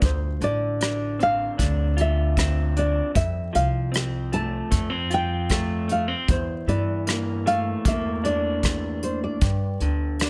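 Close, detailed microphones and light reverb give this brief fragment of a melancholic, heartbroken acoustic folk-pop ballad an intimate sound, moving in a straight 4/4 through Dm7, F, a rootless C13/E and G5. A thumb-plucked nylon-string guitar with old strings carries the woody, classical melody in plate reverb, while an electric guitar through a small old amp adds slightly broken-up, compressed, lo-fi picked accompaniment. Beneath them, a dark pizzicato upright bass on steel strings and a soft, polished brush drum kit, airy and up front with a punchy kick, hi-hat and rim click, play throughout.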